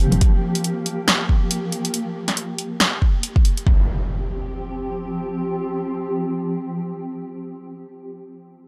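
A dry, gritty hardware sound with little room ambience frames this short, heavy cut from a longer deep dubstep piece at 139 BPM in 4/4, with a half-time feel and 16th-note swing. A granular cloud pad holds sustained chords on F5 throughout, its detuned unison tone blurred and evolving, with a slow attack, long release and its own built-in reverb. Up front, a deep house kit supplies hi-hat and a punchy snare while a deep, layered electronic kick sits close beside it, both re-recorded in a small room for a compact, brooding weight. The kit drops out at 3.6 seconds, an electronic impact lands at 3.7 seconds to open the second half, and the kick falls away at 3.8 seconds. The pad and impact then carry the mood alone until 6.7 seconds.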